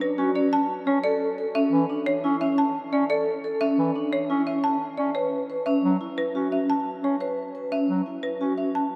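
A vast cathedral reverb envelops this hypnotic, bright minimalist classical fragment at 175 BPM in 6/4, where a woody, rustic folk marimba carries the melody, a ringing vibraphone with fast motor vibrato spins arpeggios, and a clear, vintage-toned bass clarinet supplies accompaniment from 0.2 seconds over chords moving from Bm7 through D5 to F#7(no3).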